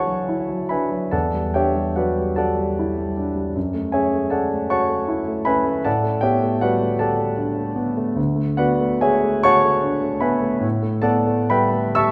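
A concert grand piano carries this luminous, serene fragment alone, its tone warm and natural with a deep bass that reaches down to D2 while the upper notes rise to E6. The style is impressionist classical, moving in a gentle 6/8 with a free, rubato feel that lets each phrase breathe. Colorful extended harmonies drift by, opening on Dadd9 and passing through Em11, F#m7 and A9sus4 before settling on D6 around 8.2 seconds and turning back to A9sus4. The piano sits up front, yet the listener seems placed further back in a recital hall whose wet, lingering reverb halos every chord. Cut from a longer piece, the passage spans 12.1 seconds and ends on that suspended chord.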